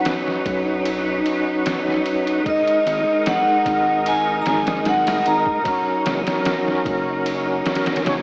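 Worn, warbling cassette tape with vinyl crackle, pitch drift and a small-speaker tone colours this dark, hypnotic trip hop excerpt at 75 BPM in G# minor, set in a moderate echo chamber. A metallic, ringing vibraphone played with hard mallets carries the melody through 12-bit sampler grit and tape echo. It sits over a lightly overdriven tonewheel organ with chorus vibrato, slow rotary speaker, tremolo and tape echo, while a bright, biting string section holds distant sustained chords. A compressed, pitched-down sampler drum kit with a thumpy kick, snare and ride enters at 0.1 seconds, and a round analog bass joins at 0.5 seconds as the chords move from Bsus2 to G#sus2 to F#.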